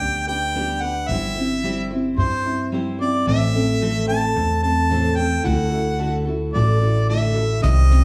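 A straight 4/4 pulse at 110 BPM carries this warm, pastoral acoustic folk snippet, with picked steel-string guitar and pizzicato upright bass moving through G, C/G, Am and Dadd9. A bright harmonica with light vibrato sings the melody up front beside the full-bodied guitar, while the bass sounds woody and growly, and a very quiet brushed drum kit enters only at 7.6 s. A moderate large studio reverb places the players a little further back in the room.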